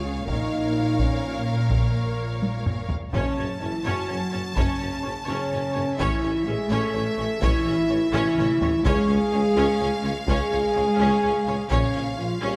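A moderate scoring-stage reverb surrounds this cinematic, epic orchestral film-score excerpt, relentless and heroic at 84 BPM in a straight 6/8, where mellow French horns hold sustained chords up front over dark cellos and rich, distant double basses. Clear, lush violins carry the melody between E5 and A5 with a second violin line on C#5, intense violas fill in the accompaniment, and a taiko ensemble struck with hard sticks drives from 0.3 s, with fills around 2.4 and 8.1 s. A roomy tuba joins the bass from 3.1 s as the harmony moves from A#m through F#m, A and C# back to A#m.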